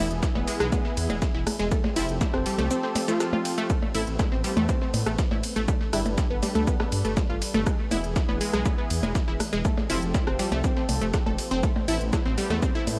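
Melodic techno with a melancholic, hypnotic pull, cut from a longer piece, where a punchy, up-front kick and smooth-hatted drum kit with rim clicks, ride and percussion blips drive a deep, rumbling detuned saw bass, bright wave-folded pluck arpeggios through analog delay, bold brassy synth stabs with vibrato, a thick, warbling pad in the background and a gritty, compressed snare and shaker. The bass, pluck, stabs and pad all pump through sidechain over an E, F, Amadd9 and G progression in a dry, cassette-tinged hardware sound.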